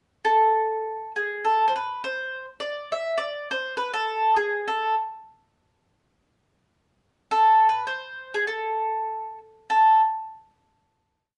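Wistful and romantic, this short Italian folk piece is carried entirely by a solo acoustic mandolin, heard up front with its picked double strings giving a round tone. The melody wanders freely in a gently swung 4/4, staying within a narrow, mid-register span and never settling into a recurring motif. Set in a minor key with a harmonic-minor colour, the line carries a tender, old-world longing. The production is dark and warm, with a light reverb around the instrument that adds a touch of space. The mandolin plays from 0.2 s to 10.0 s, and the piece closes on a final note that rings out until 11.4 s.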